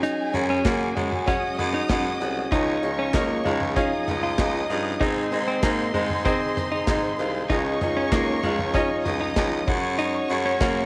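Hopeful and anthemic, this piano-driven pop excerpt in Db major moves at a straight 96 BPM in 4/4, with an open, up-front baby grand leading the accompaniment over Gbsus2, Dbadd9 and Ab chords, a clean, compressed electric guitar picking a bright riff, an expressive violin section carrying a second line through tape echo above lush, very quiet bowed string chords, a dark, smooth acoustic drum kit with a tight kick, a gritty baritone saxophone taking the bass from 0.3 seconds, and hollow, close handclaps joining at 0.7 seconds, all in moderate echo-chamber reverb with small-room ambience.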